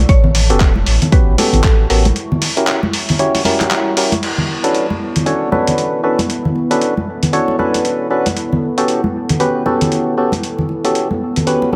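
A dark, detuned pad, a woody FM mallet pluck in the background and a full sine sub bass open this deep, warm 116 BPM deep house excerpt in B minor with 16th-note swing, joined at 0.1 s by an up-front layered electronic kick and a gritty, overdriven sampler-style kit of crash, handclaps and hi-hat, then bright live-room congas and hollow, nasal organ stabs on tape echo, as the kick drops out by 1.8 s and the bass by 2.1 s for a break over F#7b9 before the stabs, kit, congas and pumping pad carry on through Bm9 and A13 under a moderate plate reverb.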